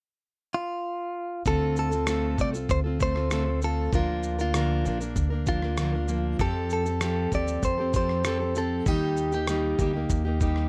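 A bright, clean electric guitar carries the melody up front, entering alone at 0.5 seconds before a fingerpicked, full-bodied jumbo acoustic guitar, woody pizzicato upright bass and a gritty, sampler-style drum kit with thumpy kick, rim click and shaker join at 1.5 seconds. This easy-going, carefree acoustic pop cut moves in a straight 4/4 through Dm7, Bb, Fadd9 and Eb, with close, detailed miking and little reverb giving it an intimate, dry sound.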